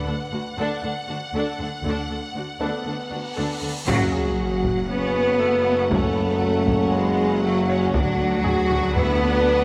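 In a straight 4/4 at 118 BPM, this futuristic, relentless cue from a hybrid orchestral and electronic film score opens in F# minor on a D chord, the rich studio violin section holding an expressive, soft-attacked melody on F#5 over smooth viola accompaniment in the background. Lush, distant cellos enter at 0.1 s beside an even double bass section, while a boxy, short-sustained grand piano adds texture through a digital delay. A huge, bright cymbal swell and sub drop rises from 3.1 s into an impact at 3.9 s, where the harmony shifts to F#m and the brass arrives. Distant, roomy French horns lead the sustained chords, joined by a tight, very quiet trombone section and a mellow tuba beneath, while a band-limited, vintage-sounding taiko ensemble struck with hard sticks drives from the back of the mix. From 4.9 s a focused, symphonic second violin line joins, and the music returns to D at 7.9 s, all within a moderate scoring-stage reverb, in a passage cut from a longer piece.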